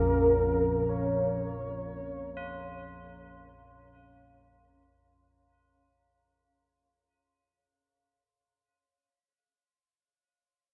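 Unsettling and desolate, this ambient fragment drifts in a huge, wet reverb, with a round, horn-like synth lead carrying a brief melody over a deep, moody pad and a detuned, chorused analog drone that sits up front. Metallic tubular bells ring out quiet arpeggios in a diffuse delay, lingering until 8.7 seconds. The lead stops at 4.0 seconds, and the pad and drone fade gradually from the start, ending around 5.1 seconds.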